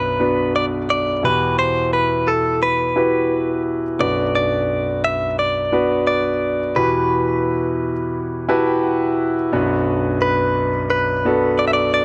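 Set in a straight 4/4 at 87 BPM, this pop excerpt in E minor moves at an unhurried pace with a bittersweet, earnest mood. A clean, direct-recorded electric guitar carries the melody throughout, its bright, twangy, scooped tone given shimmer by harmonic tremolo and sitting up front alongside the piano. Beneath it, a concert grand provides accompaniment across a broad span from deep bass to upper register, intimate and polished, with long sustain and audible action noise that adds a close, human texture. The harmony alternates between Bm and Emadd9, and the piano steps forward with a fill from 8.1 to 9.5 seconds before the return to Bm. A moderate studio reverb and a dark, warm production frame the pair, cut from a longer piece.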